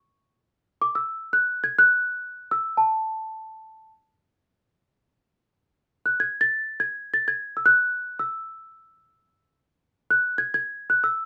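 A moderate studio reverb gives this short fragment of Arabic music a modest sense of space, while the small celesta sits close-miked and up front. Playing solo from 0.0 to 11.3 s in free time, the celesta keeps to a high register between A5 and A6. Its tone is bell-like and delicate, with the mellow touch of soft felt hammers. The mood is passionate yet stately, carried entirely by this single voice. The phrase is stated once and then returns at 5.7 s, so the same material is heard twice.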